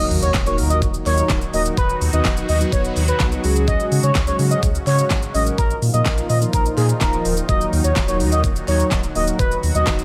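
An impact sounds at the very start of this dance-pop excerpt in Eb minor, lasting until 1.8 seconds, while the expressive synth lead, mellow synth brass, sweeping resonant pad and sub bass with octave all begin together with it, and the pop drum kit arrives at 0.1 seconds. Confident and energetic at 126 BPM in a straight 4/4, it moves through Ebm, B/D#, Dbsus4 and Bbsus4 before returning to Ebm and then B/D#. The smooth, nasal sawtooth-and-triangle lead carries the melody with vibrato, chorus and tape echo, while the dark, brassy synth brass with ring modulation and a filter sweep fills in chords beneath it. The bright, resonant pad evolves slowly through its filter swell, and a deep, full sub bass anchors the low end, with the lead, brass, pad and bass all pumping to the sidechain. Up front, the layered electronic kit brings a knocking kick, fat snare, crisp hats, shaker and handclaps with a tape-warm character. 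From 0.3 seconds a very quiet, hollow group handclap joins, set back in a large room, all inside a digital ambience.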